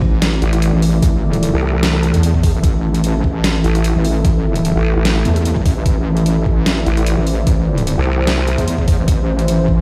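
Heavy wobble dubstep in a half-time swing, aggressive and menacing, where an overdriven knocking kick, joined by a drum kit of deep snare and bright hats, sits up front beside two overdriven wobble basses, one square-and-sine with chorus and the other a nasal formant-filtered vowel sweep, while a lush, warbling unison pad and a deep, moody ambient pad with built-in reverb pump in the background through a stone-room ambience.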